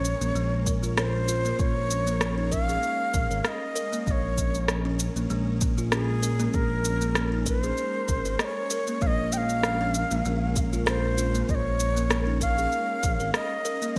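Hypnotic and mystical, this organic downtempo excerpt in a lightly swung 4/4 puts an airy, vibrato-rich Native American-style cedar flute with digital delay up front, over an ethereal background pad that carries chorus, reverb, 12-bit sampler grit and sidechain pumping, a woody, buzzing kalimba playing arpeggios through delay, a smooth, nasal synth bass that also pumps, and an electronic shaker and rim click with gated reverb, with a deep electronic kick joining at 0.7 seconds, within a bright 1980s-style digital production with light reverb.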